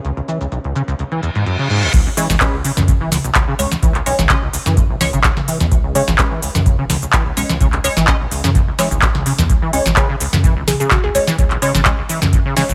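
A rubbery, resonant acid bass riff with overdrive, chorus and tape echo drives this raw, trippy acid house piece in C# minor at 127 BPM, opening with a filter sweep over a booming, up-front analog drum machine of low-pass-filtered hats, claps, snare, toms, shaker and crash plus a faint, warbling lo-fi pad, until a reverse cymbal at 1.2 seconds leads into the drop at 1.9 seconds, where a thick, saturated sub bass and a tape-toned electronic kick arrive, joined moments later by nasal, detuned dub chord stabs with phaser and tape echo, and a hollow, bouncy square-wave pluck flickers briefly at 10.7 seconds.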